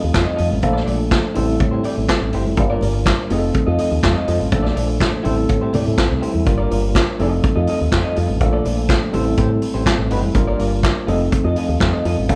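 Light reverb and the feel of a band playing live in one room frame this glamorous, danceable disco passage, cut from a longer piece, as its chords cycle through F7, Bbmaj7, Am7 and Gm7. Up front sits a vintage drum kit with a punchy kick, medium-tuned snare, hi-hat and handclaps, its top rolled off, while a round, direct fingered electric bass with an envelope filter holds the low end. A clean tine electric piano with medium tremolo through a combo amp, a compressed, picked electric guitar at the edge of break-up, and bright, thin-skinned congas played very quietly with soft hands fill out the groove.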